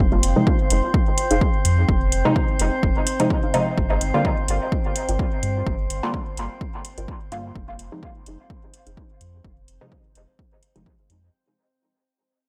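Meditative and cavernous, this short dub techno excerpt moves at 127 BPM in 4/4 with a light 16th-note swing, fading out across its full 11.3 seconds. An overdriven, punchy electronic kick sits up front from the start, joined at 0.2 seconds by metallic, overdriven hi-hats re-recorded in a large room. Underneath, a round sine sub bass holds sustained, mellow notes with sidechain pumping, while a glassy texture of drifting overtones hovers with slow attack, chorus and built-in reverb. Two filtered dub chord stabs carry the harmony: a detuned sawtooth-and-square stab with a filter sweep, phaser and dub echo enters at 0.4 seconds, and a second, plucked stab sits in the background from 1.3 seconds, lush with chorus and 12-bit sampler grit. The chords move from Fm7 to a chordless passage and then to F5, all within a dry, gritty hardware sound touched by light reverb.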